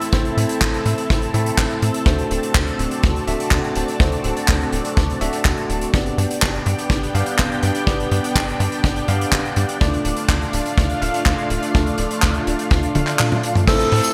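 A tight, saturated sequencer bass drives this nostalgic, danceable italo disco excerpt at 124 BPM through Am, D7, G and Dm, under a lush, detuned unison pad with chorus and phaser, bell-like electric piano stabs through digital delay, a tight kick and a loose small-room kit of hi-hat, handclaps, tambourine, crash and toms in gated reverb, before a drum fill at 13.0 seconds leads into a raspy, up-front alto saxophone that enters on A4 at 13.7 seconds, all in a bright 1980s-style digital production with plate reverb.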